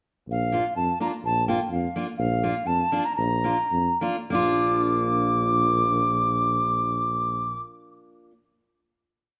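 Alpine folk dance-band music in a jolly, festive 2/4 in Bb major at 94-127 BPM, this short complete piece sets an airy, reedy clay alto ocarina melody of motif-based period phrases with vibrato over a mellow, breathy tuba playing scooped root-and-fifth bass on the main beats and a full-bodied picked dreadnought steel-string guitar adding off-beat triad chords with audible finger squeak, all slowing from 2.2 s into a final chord at 4.3 s, with the guitar sounding until 8.3 s in a moderate recital-hall reverb.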